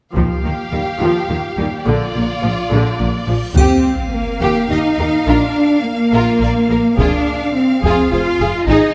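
Lush bowed strings open this majestic, adventurous passage of epic orchestral film score in 3/4, with a vibrato-laden violin melody, a portamento-tinged second violin line, expressive violas, focused cellos and distant double basses, all driven by hard-stick taiko drums, before a huge, bright reverse cymbal and sub drop land an impact at 3.6 s, where mellow French horns enter with sustained chords and a close, dry triangle briefly rings.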